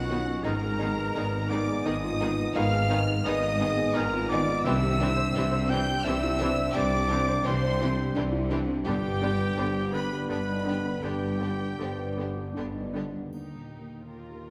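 Bathed in a wet scoring-stage reverb, this uplifting, hopeful cinematic film-score excerpt in a rubato 3/4 sets a lush, vibrato-laden studio violin section on the melody over clarinet and distant oboe second lines, a quieter symphonic violin section, a clear viola section and a dark concert grand piano in accompaniment, a mellow French horn section holding chords until 13.0 s, ringing fingerpicked harp arpeggios, and rich cello and double bass sections on the bass, with a faint triangle entering at 13.3 s as the harmony arrives on Eb.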